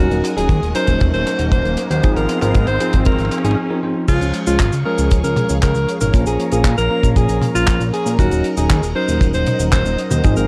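A bright, vibrato-laden alto saxophone carries the pop-style melody up front through tape echo, set over a fat, saturated analog bass, bell-like tine electric piano stabs and a swirling phased string machine in the background in this playful, romantic italo disco excerpt at 117 BPM in Db major. A tight, polished kick drum sits forward while a damped 70s kit with cabasa, handclaps, hi-hat, toms and crash plays a drum fill as an electronic riser builds from 0.3 to 3.6 seconds, followed by a short break before the second section arrives at 4.1 seconds. The production is dark and lightly treated with small room ambience, moving from Ebm7 and Ab6 to Db, Bbm and back to Ebm7.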